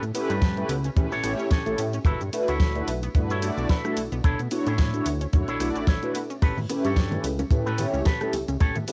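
Nu-disco at 110 BPM in A mixolydian, this sunny, groovy clip from a longer piece moves in 4/4 with a light swing on the sixteenths over the chords A9, Gmaj13, Bm11 and back to A9. Up front, a mellow synth brass carries the accompaniment with a round, dark, brassy sawtooth tone and a filter sweep, colored by chorus, phaser and tape echo and pumping against the sidechain. Beneath it, a fat analog bass sits thick and detuned, while a clean, twangy electric guitar picks a riff through an envelope filter, with subtle chorus and tape echo. A very quiet, bright unison pluck adds warbling, vintage arpeggios. A tight, dry acoustic kick anchors a layered electronic pop kit with a fat snare, hi-hat, rim click, cabasa, ride and crash, and ringing bongos, tambourine and congas join in the background at 6.4 seconds. The sound is a home recording on cassette with light reverb, and the tape grain is heard on the kick and kit.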